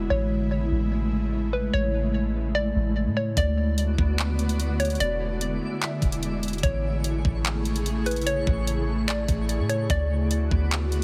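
A half-time 4/4 groove at 147 BPM anchors this dreamy, blissful atmospheric cloud-rap excerpt in A major. A deep, round 808-style bass and an ethereal, airy pad with detuned unison layers and ensemble chorus drift through Amaj7, D6 and E7 chords, while a hollow, bouncy square-wave pluck carries the melody through chorus, low-pass filtering and digital delay until 10.3 seconds. A tape-tinged trap kit with a knocking kick, bright hats and handclaps joins at 3.4 seconds, and a faint twinkling granular texture with octave-up shimmer arrives at 3.9 seconds, all within a dry, heavily compressed, radio-like mix.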